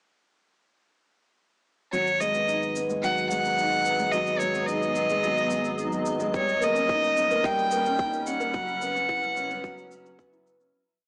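Heard through a home cassette recording with a small-speaker sound and a wet studio reverb, this brief, complete piece of piano and strings electronica feels melancholic and hypnotic, building from 1.9 seconds before fading out toward its close. Up front, a felt-muted upright piano plays a mellow eight-step arpeggiated sequence, its thick felt and audible action noise giving it an intimate, vintage character. Alongside it, a single bowed violin with a reedy gut-string tone and light vibrato sings arching motif-based phrases in a period style. From 3.8 seconds, a granular cloud pad adds blurred, slowly shifting sustained chords over G#m7, D#7 and F#7sus4, pumping under sidechain compression. Deep in the background, a round analog bass holds sustained roots while a shaker keeps a restrained pulse. A tight electronic kick arrives at 6.3 seconds with a four-on-the-floor beat, re-recorded in a large room like the shaker.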